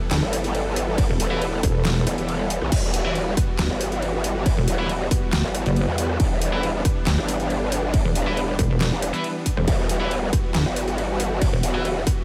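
Set in a digital ambience, this short cut from a longer heavy wobble dubstep track sounds menacing and aggressive, moving at 138 BPM in 4/4 with a half-time feel in E minor. Huge, lush supersaw chords sustain an Emadd9 harmony throughout, their detuned sawtooth unison pumping under sidechain compression. Two up-front basses dominate the low end: a heavy pulsing pluck wobble bass with chorus and overdrive, and a growling, saturated growl bass whose formant filter and distortion give it a wobbling, bright edge. The dubstep drum kit brings a deep snare, bright hats, handclaps, rim clicks and crash and ride cymbals, all overdriven. A distorted electronic kick joins at 1.0 seconds, and from 1.3 seconds a double-tracked, high-gain electric guitar adds picked stabs with distortion and delay.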